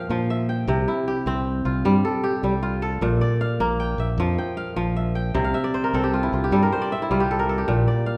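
A wet recital-hall reverb surrounds this short excerpt of West African traditional music, a flowing, hypnotic piece in 12/8 at 103 BPM. Up front, a crisp, ringing kora spins fingerpicked arpeggios over chords moving between Bb and C, adding a fill from 5.4 to 7.7 seconds. Beneath it, a bright, direct fingered electric bass holds the low end.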